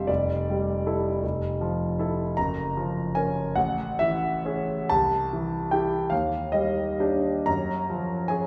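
A solo concert grand piano opens at once, its tone clear and natural, sitting up front with a deep bass that reaches down to F1 and climbs as high as A#5. This is impressionist classical piano in 6/8, dreamy and serene, moving at a slow 41-54 BPM counted in dotted quarters with a freely breathing rubato. The harmony drifts through lush, colorful chords, starting on A over F and gliding through Fmaj7, F#maj7, Amaj7, C and Ebmaj7 before settling on F#maj9 at 7.5 seconds. A wet recital hall reverb with a 1.4-second tail surrounds the instrument, giving the sound the airy resonance of a church or concert hall. The piano plays throughout this brief 8.5-second passage, which is cut from a longer piece.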